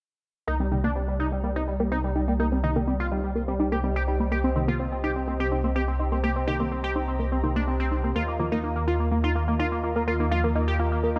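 Dark and dramatic, this 125 BPM techno fragment in C minor sets a deep, rumbling detuned saw bass up front beneath a juicy, resonant polysynth melody with a filter sweep, cassette tape color and digital delay, a tight, driving sequenced synth arpeggio with phaser and tape echo, a lush, thick unison pad with a slow attack in the background, and muted, mellow dub chord stabs entering at 0.7 seconds, all set in a moderate concert-hall reverb as the harmony moves from Cm7 to Ebsus2 at 8.2 seconds.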